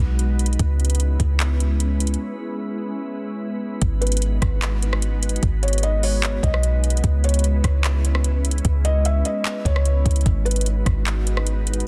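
A deep, round 808-style bass sits up front in this melancholic, ethereal cloud-rap excerpt at 149 BPM with a half-time feel in G# minor, joined by a smooth R&B drum kit with metallic hats and a softly clipped snare, and a glassy FM pad holding chorused, reverb-soaked chords with sidechain pumping. From 4.0 seconds a felt-muted upright piano carries an intimate delayed melody with audible action noise, and the mix is finished with a dense, heavily limited modern master.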